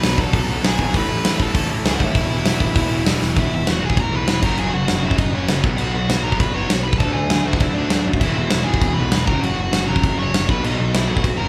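This rebellious, rowdy punk rock excerpt at 198 BPM in 4/4, tuned to A4 = 437 Hz, opens with the full band playing live in one room with light reverb. A big acoustic drum kit sits up front with a tight kick, medium-tuned snare, hi-hat and crash, while a dark, smooth overdriven lead guitar carries the melody. Beneath it, a double-tracked crunchy guitar and two very quiet sludgy distorted guitars, one brighter than the other, play the riff, and a growly picked electric bass sits in the background; a drum fill at 3.2 s leads into a new section moving through F#, B5, D, E, F# and back to B.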